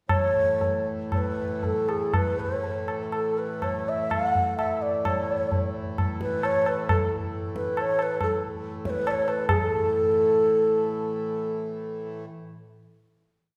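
Hindustani classical music in raga Bilaval on A, meditative and serene, set in a ten-beat cycle in 5/4 that speeds up from 117 to 158 BPM, with an up-front, breathy, mellow bass bansuri playing a tongued, straight-toned composed line and improvisation over a reedy, nasal hand-pumped harmonium drone and close, dry, high-tuned tabla that stops at 9.6 seconds, all within the lingering reverb of a recital hall before a final chord arrives at 9.5 seconds to close the piece.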